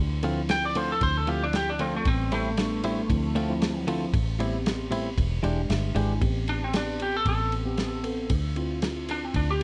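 A foam-muted, round electric bass opens this brooding, soulful straight-eighth soul blues excerpt in A minor at 115 BPM, joined by a muffled, dry drum kit with dark cymbals, mellow tine electric piano, clean twangy stabs from a direct-recorded guitar that drop out at 6.1 seconds, and an up-front, slightly broken-up lead guitar soloing through analog delay, with the electric piano adding a fill from 5.2 seconds over an E7#9 in a close mix with little reverb.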